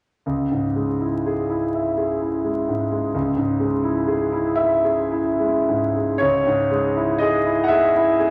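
This is a romantic classical nocturne for solo piano, mournful and melancholic in C# minor. It moves at a slow 35-44 BPM, counted in dotted quarters in 6/8, with a freely breathing rubato feel. A bright concert grand carries everything alone, sitting up front and ranging from C#2 to F#5, with a brilliant, open tone, a deep bass and a long sustain that lets the opening C# minor harmony ring. The passage shifts into a new section at 6.2 s before the fragment ends at 8.3 s, cut from a longer piece. A wet recital hall reverb surrounds the piano, and a vinyl crackle gives the sound an aged patina.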